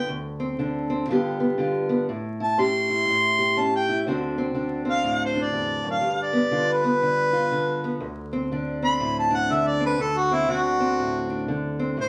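A mellow harmonica and a fingerpicked parlour steel-string guitar open together in this gritty, soulful acoustic country blues, cut from a longer piece and swinging at 121 BPM in D mixolydian. The harmonica carries a jazz-inflected solo line with soft attacks and scooped notes, sounding distant and roomy yet up front. The dark, boxy guitar accompanies over changes such as G7, A7 and D7, all set in moderate studio reverb with a layer of vinyl crackle.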